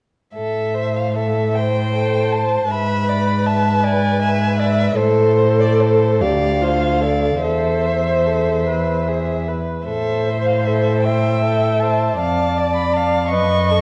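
Melancholic and elegiac, this fragment of a slow romantic string quartet movement moves in a lilting compound metre with a freely breathing rubato. The first violin carries the melody with vibrato, soft attacks and expressive portamento. Beneath it, a second violin holds a smooth, even line. The cello sits close and up front, playing the bass sul tasto with light vibrato and an airy, intimate bow tone. From 1.6 seconds a dark, woody viola joins with a distant-sounding accompaniment. The quartet is heard in a spacious scoring-stage reverb through worn old cassette tape, whose warbly pitch drift and muffled top lend the recording a faded, wistful cast.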